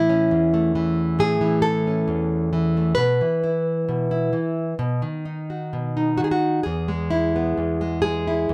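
A bright, fingerpicked nylon-string guitar sits up front in this gentle, warm folk excerpt, played solo in a loose, rubato classical style with audible finger squeaks as it moves from A through Bsus4 and B to E over 8.5 seconds, captured by close, detailed microphones with a touch of light reverb.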